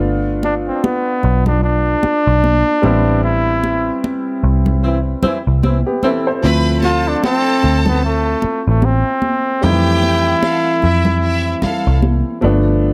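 An up-front flugelhorn carries the melody through tape echo in this silky, cinematic slice of lush 1970s-style soul, its swung groove resting on a dark, round, foam-muted picked electric bass and an intimate concert grand piano with audible action noise. Soft-handed, high-tuned congas ring in the background, while a mellow horn section adds octave-doubled stabs from 4.8 to 6.3 seconds. A clear, bowed chamber violin section with intense vibrato enters at 6.4 seconds as a second line, all set in a small room.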